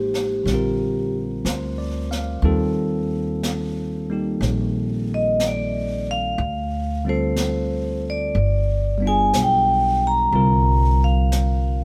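Intimate and tender, this slow swung jazz ballad at 61 BPM features a ringing, metallic vibraphone played with medium hard mallets and motor off, carrying the solo melody up front over a bright, clean, bell-like tine electric piano, a woody, growly pizzicato upright bass, and a soft brushed drum kit in a small room, all bathed in light reverb as the chords move from Bb69 through Dm7 and G7b9 to a closing C9sus4 around 10.3 seconds.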